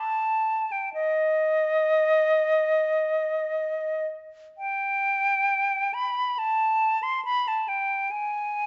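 Classical and yearning, this meditative, rubato fragment of a longer piece features a silver concert flute alone, its airy, metallic tone sung with vibrato and soft attacks up front in a moderate recital hall reverb, within a dark production across roughly 8.7 seconds.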